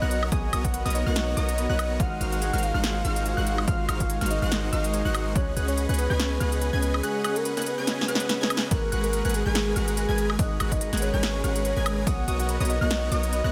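A lush, bittersweet future bass cut opens at once with a soft, round, octave-layered synth lead carrying the melody through chorus, phaser and tape echo, over a huge, detuned supersaw riff, a deep, boomy 808-style bass up front, a ringing fingerpicked Celtic harp arpeggiating in the background with dub echo, and a lush detuned unison pluck arpeggio high above, all pumping with sidechain. At a half-time 143 BPM in G# minor with a light swing, an overdriven big-room dance kit of crisp hats, ride, punchy snare, woodblock and a drum fill drives the groove, while a punchy overdriven electronic kick enters at 0.3 seconds, drops out at 5.4 seconds and returns at 8.7 seconds. Chords move from Bmaj7 through G#13, C#7sus4 and G#m9 before returning to Bmaj7, all set in light reverb and digital ambience.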